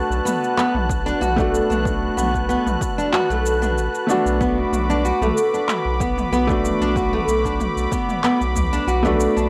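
A felt-muted upright piano, its action noise audible, opens at 0.0 s alongside a detuned sawtooth pad with chorus, both pumping under sidechain compression, in this meditative organic downtempo excerpt at 94 BPM in 4/4 with a light 16th-note swing. A round, nasal analog bass, also sidechained, and a deep house kit of overdriven handclaps, shaker and toms join almost at once, while a fingerpicked nylon-string guitar, finger squeaks audible, adds arpeggios through a tape echo the piano shares. A punchy, overdriven electronic kick enters at 0.9 s, and the whole passage rests on a single Bm7 chord in B minor pentatonic. Near the close, at 8.6 s, a deep, very quiet udu sounds briefly. The recording is dry and gritty, with a cassette-tape character and a touch of studio reverb, giving the mellow, warm mood an intimate, vintage feel.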